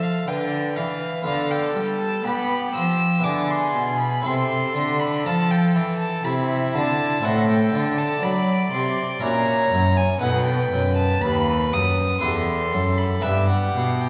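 From the first beat, a solo violin sings a reedy, gut-strung melody high above a dark, nasal second violin, a brilliant, plucked French-style harpsichord with octave strings, and a rich cello bass with light vibrato, in a solemn, introspective baroque-style sonata movement at 60 BPM in 3/4 with rubato, shifting from A minor to E minor at 7.2 s, heard from further back in a reverberant scoring stage in this fragment of a longer piece.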